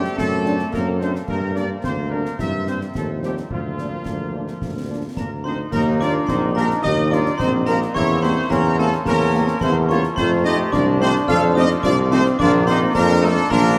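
Rousing and proud, this short cut from a military-style march for wind band moves at 108 BPM in a straight 2/4 in Bb major, with a distant, roomy trumpet section carrying the melody over an up-front tuba bass with vibrato, a smooth-topped euphonium second line, very quiet sustained trombone chords, mellow French horns entering at 0.4 seconds, concert snare, bass drum and bright clash cymbals, and from 5.2 seconds a bell-like glockenspiel and a hollow, airy small flute group, all bathed in a cavernous cathedral reverb.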